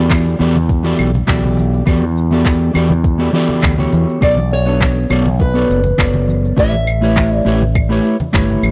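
A straight 4/4 pulse at 102 BPM, set by a soft, overdriven electronic kick and overdriven electronic handclaps, claves and shaker over very quiet, ringing, close congas, drives this wistful, relaxed sunset chillout excerpt in E dorian, where a punchy, up-front fretless electric bass and a dark, clean mellow electric guitar with analog delay move through Em11, Bm7 and A7 while a full-bodied nylon-string guitar, fingerpicked with audible finger squeak and its own analog delay, carries the melody from 4.2 s to 7.7 s inside a dry, gritty hardware sound with digital ambience.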